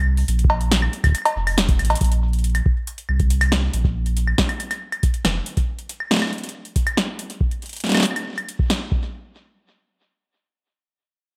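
Intricate and playful, this IDM piece opens on a round, sine-like sub bass with tube saturation that sits up front and holds until 5.4 seconds. An analog electro drum machine with a punchy snare, metallic hi-hats, claves and cowbell, touched with delay, enters next and is soon joined by a deep, tape-toned electronic kick drum, with a drum fill at 1.8 seconds. Light digital reverb frames the bright 1980s-style production.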